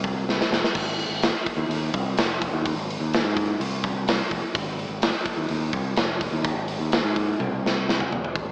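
A big, up-front rock drum kit with a punchy kick and a medium-tuned snare in a stone-room sound opens this swaggering, confident classic rock passage alongside a growling, overdriven fingered electric bass, with drum fills around 0.3 and 7.4 seconds and the whole heard through a small-speaker tone with moderate studio ambience.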